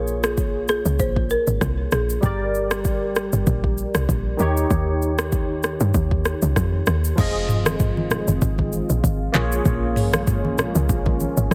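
A lightly swung 16th-note groove at 97 BPM in 4/4 drives this sultry, mellow afrobeats excerpt in F minor, where an overdriven, up-front electronic drum kit with a deep kick, metallic hi-hats, handclaps, shaker, rim clicks, toms and crash sits over a punchy, woody log drum bass and a bright, barky tine electric piano treated with ensemble chorus; a dry, rustic marimba melody with delay appears only from 0.2 to 2.1 s, and at 7.2 s a smooth, detuned analog pad with chorus joins in the background alongside very quiet, low-tuned congas, all within a heavily compressed, radio-like sound with light reverb.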